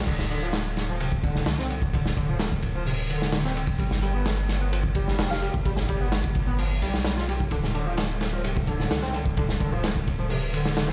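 Breakbeat with an energetic, funky drive at 129 BPM in D dorian, this short cut from a longer piece moves from D7(no3) to G7 and back, built on a crunchy, up-front breakbeat kit with a tight kick, dark cymbals and a rolled-off top. A deep, thick, saturated sine sub bass holds the low end beneath a screaming, guitar-like synth lead of sawtooth and square waves, its vibrato-laced riff colored by ensemble chorus, cassette tape and digital delay. Bright, vintage bongos and congas slip into the background at 7.6 seconds, and the whole mix rings as if played on a big sound system in a bare stone room.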